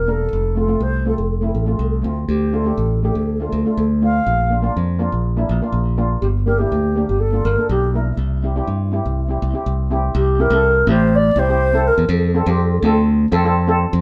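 Carefree and bouncy, this calypso fragment moves in a straight four-beat feel and is cut from a longer piece. A reedy alto flute carries the melody with vibrato and tongued notes, its tone pure but set back at a distance, and it drops out at 13.0 s while the others continue. Underneath, a bright, growly fingered electric bass sits up front and direct. A steel pan played with soft rubber sticks supplies mellow, shimmering accompaniment, its metallic sound a little vintage and band-limited. The harmony cycles through F, Dm, Bb, Gm and C. A new section begins at 10.1 s, and the chords return to F at 12.1 s. The trio sounds like a band playing live together in a small room with a wet, short reverb.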